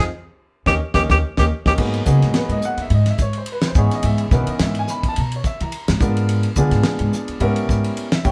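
Slick and funky, this 107 BPM electric jazz fusion excerpt in G# minor with a light 16th-note swing opens on a band accent as a bright, up-front tenor saxophone plays a brief scooped, vibrato-laden line until 1.7 s, while a damped 70s drum kit enters at 0.7 s with a fill and then continues with its dry, fat snare and tight kick, a woody, dark upright bass plays pizzicato beneath, and a clear baby grand piano with audible action noise and long sustain accompanies through G#m7, C#m9/G#, A#7b9/G# and Gdim7 chords, all heard as a band playing live in one room with moderate studio reverb.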